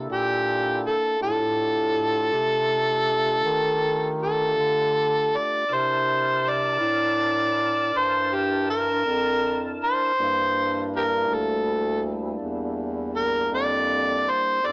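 A fat, lightly overdriven tonewheel organ with key click, slow rotary speaker and chorus vibrato holds sustained chords over a mellow, soft-attack bass clarinet bass line with subtone and vibrato, and at 0.1 seconds a gritty, amplified harmonica enters up front with punchy tongue slaps, scooped notes and light vibrato, giving this rollicking, swaggering slow blues excerpt in C mixolydian at 54 BPM in 12/8 a jazz flavour as the chords move from C13 to F13 and back, all in moderate studio reverb with a small-speaker sound.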